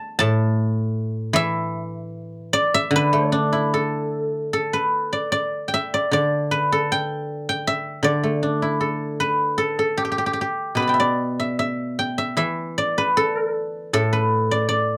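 The recording sits in a close, modestly reverberant booth, with the guzheng placed up front so its ringing, silvery tone comes through clearly. This is traditional Chinese solo plucked-string music, serene and flowing, played freely in rubato over a duple metre. The guzheng carries the piece alone from start to finish, its fingerpicked strings reaching from a low A2 up to a bright D6. A short opening passage gives way at 4.5 seconds to a longer second section that runs to the close at 15.0 seconds. Cut from a longer piece, it offers a brief, calm glimpse of the instrument's acoustic resonance.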